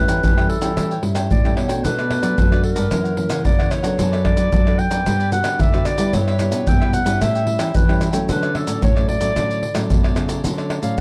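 A dark, warm production with light reverb frames this festive, joyful samba and choro, cut from a longer piece. A mellow, distant clarinet carries the melody as the roomy, classical-style solo voice, bathed in plate reverb. A crisp, picked cavaquinho sits in the background while one full-bodied nylon-string guitar plays thumb-plucked accompaniment and another supplies the bass, under up-front, compressed and saturated maracas, pandeiro, tamborim and deep surdo struck with hard hands, all moving through chords that run from A7 to Dmaj7.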